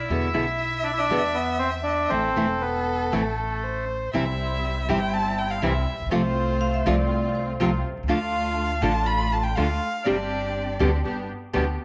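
Tango at 121 BPM in 4/4, played with a rubato feel, this tense, passionate passage cut from a longer piece opens in A harmonic minor over E7 and Am before turning to C major at 4.1 seconds. A reedy, airy bandoneon carries the melody up front with a slapback echo, stopping at 3.9 seconds, while a single bowed violin, warm-toned and distant yet up front, traces a second line with vibrato and portamento, then takes an expressive solo from 4.1 seconds onward. Beneath them, a woody, thumpy upright bass on gut strings plays pizzicato, and a nylon-string guitar with fresh strings is fingerpicked in a deep classical style, its finger squeaks audible. From the C major turn, a muted, veiled string section bowed con sordino adds dark stabs touched by slapback echo, and a vibraphone struck with hard mallets, motor off, briefly rings out a metallic second line in the middle of the passage. The harmony moves through C, F/C, Dm, Gsus4 and G, all set in a moderate spring reverb.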